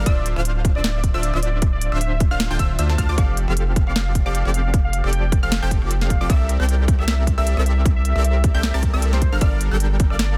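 A half-time 4/4 groove at 154 BPM, swung lightly on the sixteenths, drives this bright, lush future bass excerpt in F major, tuned to A4 = 444 Hz, with a hard-clipped electronic kick up front and a trap kit of sharp snare and crisp hi-hats. A deep, saturated sine sub bass, a punchy detuned supersaw stab riff with a filter sweep, and a mellow, wave-folded unison pluck arpeggiating high in the background all pump with the sidechain over Dm7, F69, C13 and Gm7. From 0.1 seconds a smooth, velvety lead carries the melody with chorus, vibrato and digital delay, and the whole mix sits in a dry, dense, heavily limited modern master.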